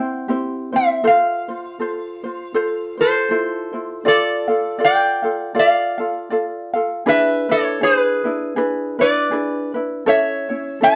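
A gently swung eighth-note lilt in 4/4 carries this relaxed, languid Hawaiian piece, heard as a short cut from a longer performance. A metal-body resonator slide guitar sings the melody up front, its acoustic tone nasal and metallic, with a bright edge from the fingerpicks and the glide of the slide. Beneath it, a fingerpicked acoustic ukulele supplies mellow, light accompaniment, also close and present though set lower in level than the guitar. The harmony drifts from C to Fmaj7, then shifts at 4.1 seconds into a second section moving through Dm and E7 before landing on A at 10.1 seconds. A moderate studio reverb and a dark production give the pair an intimate glow.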